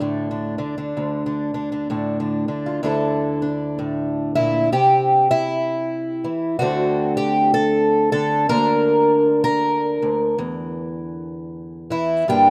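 A fingerpicked twelve-string acoustic guitar carries this brief, wistful folk excerpt alone, its octave-doubled courses giving a shimmering, woody voice with the slightly dulled edge of old strings. The tone is boxy and parlour-like, sitting up front in a rough home demo mix with light reverb that keeps the mood intimate. At a slow 64 BPM in 4/4 with a gentle swing on the eighth notes, the playing spans from a low D2 up to Bb4. The harmony rests on a D5 opening before shifting at 2.8 seconds into a passage moving through Dsus2, C, D5, Bb/D and Dsus2/E. Cut from a longer piece, the fragment ends at 12.5 seconds, leaving its open, unresolved chords hanging.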